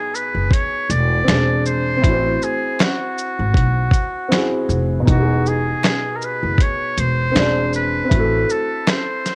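A breathy, buzzy trumpet with a metal mute carries the melody in this nostalgic, cosy lo-fi hip hop excerpt, its tone softened by a low-pass filter and tape echo. A felt-muted upright piano plays mellow chords through a cassette-tape haze, over a gritty, compressed sampler-style drum kit with a thumpy kick and a swung sixteenth-note feel, while a woody, dark pizzicato upright bass enters at 0.3 seconds. Very quiet, distant finger snaps come in at 1.3 seconds, and the recording has the intimate room tone of a home cassette session.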